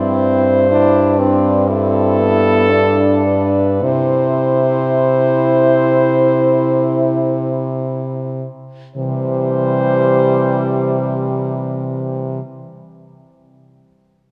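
Four French horns sound together from the start in a serene, lyrical classical passage cut from a longer piece, with a rubato feel that slows down through the first 9.0 seconds before a new section begins. A mellow lead horn carries the melody up front, and a close-miked bass horn sits equally forward. Behind them are an accompanying horn and a distant, roomy second-line horn with light vibrato, all within a dark, warm production bathed in a lush church reverb.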